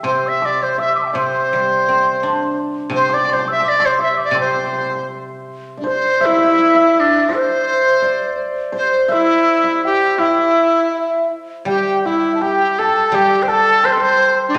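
An up-front, bright large dizi with a buzzing membrane carries the melody in this graceful, pastoral Chinese chamber piece in a free rubato feel, while a breathy, hollow alto ocarina with vibrato and a shimmering hammered dulcimer weave second lines, and a silvery guzheng played with fingerpicks accompanies until 6.6 s, falls away, then returns at 11.7 s, the ensemble sitting in a reverberant recital hall in this fragment cut from a longer work.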